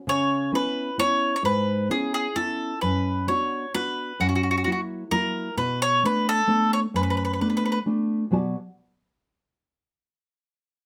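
A bowl-back mandolin and a nylon-string guitar begin together at 0.1 seconds in this romantic, passionate fragment of Italian folk music, moving in a straight 3/4 at 131 BPM in B dorian. The bright, picked mandolin sings the melody on double strings up front, while the dark, full-bodied guitar gives thumb-plucked, deep classical accompaniment through chords such as C#m7, F#7 and Bm7. Close, detailed microphones and light reverb keep both instruments intimate; the mandolin stops at 7.8 seconds and the guitar rings on until 8.6 seconds as the music moves into a new section.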